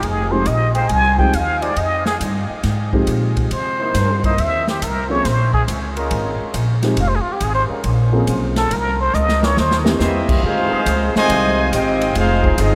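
A swung 4/4 at 139 BPM drives this brassy, dramatic big band excerpt in F minor, cut from a longer piece and set in a vast, echoing space with a huge, wet reverb. The upright bass sits up front with a woody, thumpy pizzicato tone while the airy, polished drum kit rides along with punchy kick, medium-tuned snare, hi-hat, ride and crash. A plunger-muted trumpet takes the melody from the start, growling and raspy with wah-wah colour, scooped notes and light vibrato, over a dark upright piano with short sustain and a very quiet trombone section holding sustained chords from 0.7 seconds. The harmony moves through Fm7, C7#9 and Bbm7, and a drum fill arrives at 9.1 seconds near the end of the muted solo. At 10.0 seconds a mellow, tight trumpet section takes over the melody with soft attack, joined by a clear trombone section on a second line.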